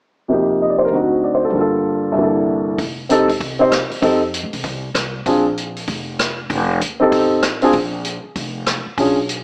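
Joyful and brassy, this excerpt of big band swing in F mixolydian moves at a brisk 194 BPM, with an up-front grand piano playing alone from 0.3 s before a woody, thumpy pizzicato upright bass and a drum kit of hi-hat, punchy kick and rim click join at 2.8 s, all set in a moderate echo-chamber reverb with a small-speaker sound.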